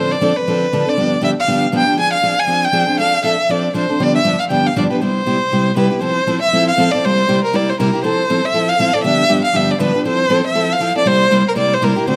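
A rich, bowed violin with vibrato, soft attacks and expressive portamento carries the melody over a bright, picked steel-string acoustic guitar with fresh strings and audible finger squeak, both up front from the very start in this swinging, lively jazz piece at 238 BPM in C major. The harmony moves through Dm7, G7 and Fm6 before settling on Cmaj7, then shifts at 6.0 seconds to a passage built on Fmaj7, C7 and G7. Close, detailed microphones capture the duo in a moderate recital-hall reverb, and the recording is cut from a longer piece.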